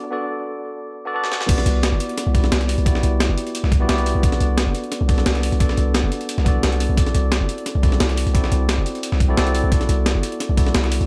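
Liquid drum and bass at 175 BPM in C lydian, this dreamy, lush passage is cut from a longer piece and opens with a short build-up and filter sweep before the drop lands at 1.5 seconds. A clean tine electric piano, heard through built-in speakers and touched with tape echo, plays the accompaniment throughout, moving from Bm7 to Cmaj9#11, then through Bm7 and D9 to a rootless Gmaj13. Underneath, a deep, long sine 808-style bass with a fast attack and decaying tail sits up front, with a high-pass filter shaping it. A gritty breakbeat sampler-style kit enters at 1.2 seconds with a drum fill, its crash, hi-hat and high-tuned snare compressed and set in studio reverb. At the drop, a thumpy, compressed electronic kick joins alongside a second, overdriven soul kit with a medium-tuned snare and hats, re-recorded in a small room and placed in the background. The whole mix carries light reverb and a high-pass filter.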